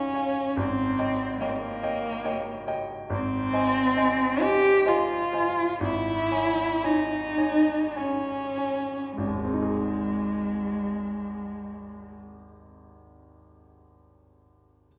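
Heard from further back in a recital hall, wrapped in wet reverb, this romantic classical duo flows in a lyrical three-time with rubato and slows down between 1.9 and 9.2 seconds. Up front, a warm, expressive bowed cello carries the melody with vibrato, soft attacks and portamento, while a clear, polished baby grand piano accompanies over an A-flat bass, turning briefly to D-flat minor before returning to A-flat at 9.2 seconds. The cello stops at 12.2 seconds, leaving the piano alone until 14.9 seconds.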